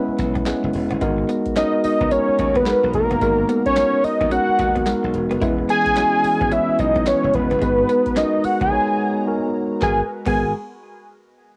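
A fat, warbling analog lead with chorus carries the melody up front in this bouncy, punchy new jack swing R&B excerpt at 109 BPM in G# minor, backed by a mellow tine electric piano, a clean, direct-recorded guitar riff with lush chorus in the background, a glassy slap bass, a booming analog drum machine with deep kick, crisp snare and metallic hats, very quiet group handclaps, and a swirling, nasal phased pad entering at 1.0 s, as the harmony moves between E6 and G#m9 in a home cassette recording with a break at 8.7 s.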